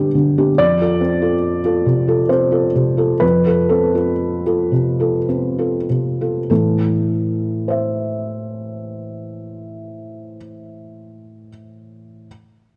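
A felt-muted upright piano plays alone from the start, its thick felt giving a soft, dark, mellow tone that sits up front in an intimate, reflective piece of neoclassical minimalist piano in A minor and 3/4, moving with rubato between 48 and 71 BPM. The opening passage drifts from G to F and slows down over its first 6.5 seconds before settling on A minor, the phrase cut from a longer piece with the piano ending at 12.3 seconds. A moderate concert hall reverb surrounds the playing, while worn cassette tape adds a warbling pitch drift.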